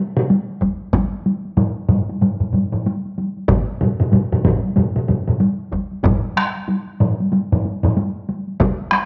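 This short excerpt of Japanese traditional taiko music opens at 0.2 seconds with a solo taiko drum struck with hard sticks, its vintage, band-limited tone sitting up front beside a taiko ensemble played with heavy sticks in a small room. A second ensemble, also on heavy sticks and heard in a live room, joins at 0.6 seconds. A third ensemble, close and dry under hard sticks, comes in at 1.6 seconds and drops out at 8.0 seconds. The groove moves at 94 BPM in 4/4 with a 60% swing on the sixteenths, giving the driving, powerful pulse a rolling lilt. An echo-chamber reverb and small-room ambience wrap the whole, with the top end dulled, before the drums stop at 9.1 seconds where the passage is cut from a longer piece.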